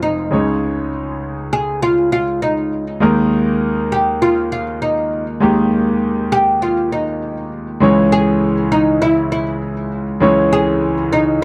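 A dry, close 1970s-style studio sound with light reverb frames this glossy, romantic pop passage at 100 BPM in a straight 4/4, cut from a longer piece. Up front, a woody, plectrum-plucked oud with double strings carries a compact melody between Eb4 and Ab4, while a smooth, vintage concert grand piano accompanies from a deep bass on F1 up to Db5. The harmony moves from Dbsus2 to Ebsus4, then turns to Db minor at 7.8 seconds as a new section begins.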